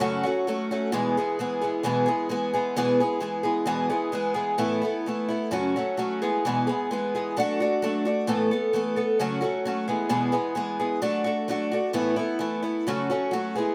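A moderate stone-room reverb surrounds this live-in-one-room rock recording, where a picked twelve-string acoustic guitar sits up front and carries the whole passage alone, its dark, woody tone with old strings and a shimmering octave-doubled ring. At 131 BPM in a straight 4/4 in A major, the hopeful mood rests on F#m and E before a new section at 4.6 s cycles through Asus2, F#m, E and D/F#. The clip is cut from a longer piece and ends on F#m at 12.9 s.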